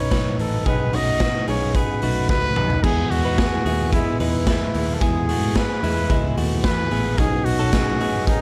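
A warm trumpet with light vibrato and slapback echo opens this bright, nostalgic jangly indie pop at 110 BPM, carrying the melody over background steel-string acoustic guitar with audible finger squeak, twangy, compressed clean electric guitar arpeggios soaked in spring reverb and slapback echo, and a round, foam-muted electric bass. A gritty, saturated garage drum kit sits up front with a punchy kick and a pumping stone-room sound, rolling through a fill at 2.3 seconds. A very quiet, reedy electric piano joins at 2.8 seconds as the harmony moves from Badd9 to E.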